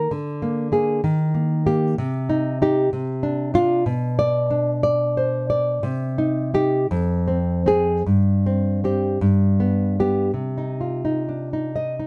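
In a rubato 2/4 that stretches and yields, this wistful, melancholic romantic piece for solo nylon-string guitar is a short passage cut from a longer piece, its harmony moving through Eb, Cm, Fm and a suspended G before resolving to Cm as a new section opens at 10.3 seconds. The guitar sits up front with a warm, acoustic, thumb-plucked classical tone, and audible finger squeaks add intimacy. Light reverb surrounds it, and the sound has a soft, rolled-off top.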